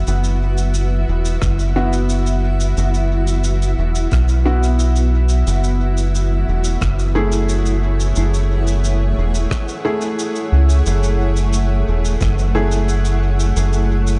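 Meditative and spacious, this ambient dub excerpt moves at 89 BPM in F# minor, with a bright, blurred granular cloud pad holding sustained chords as an up-front, deep analog bass of tube-saturated sawtooth and sine tones anchors the low end. A woody, boxy upright piano adds short stabs through dub echo, while an acoustic shaker and rim click in a big room trail their own echoes and a muffled, pitched-down electronic kick thumps in the background from 1.4 to 12.3 seconds. The echo-heavy mix stays dark at the top, shifting from Esus2 to F#m9 at 5.5 seconds.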